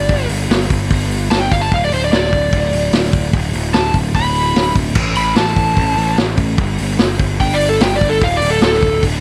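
An overdriven slide guitar and a growly, fuzz-drenched picked bass open this swaggering blues rock and southern rock excerpt together, with a vintage drum kit arriving a split second later. The tempo is a driving 148 BPM in a straight 4/4, and the whole passage is an electric slide guitar solo cut from a longer piece. The slide guitar carries the melody with a dark, overdriven tone, played with fingerpicks and ranging from A4 up to B5. Beneath it, the bright, direct-amped bass sits up front in a low register, while the acoustic kit brings a punchy kick, a medium-tuned snare, hi-hat, crash and dark cymbals with a rolled-off top in a studio room. The harmony starts on G5, passes into a chordless stretch from 1.7 seconds, and lands on D5 at 8.2 seconds, all wrapped in light reverb.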